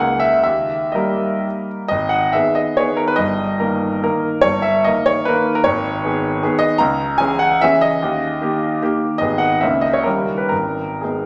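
Dotted rhythms drive this romantic triple-time dance in 3/4, its tempo drifting with rubato between 111 and 160 BPM in G# minor and carrying a nostalgic, capricious mood. A solo concert grand piano, clear and up front with a deep bass and long sustain, ranges from G1 to A#5 through the short cut from a longer piece. It moves into a new section at 1.9 seconds, wanders through C#m and D#7b9 before settling back on G#m at 10.5 seconds, and rings out in a wet recital hall reverb.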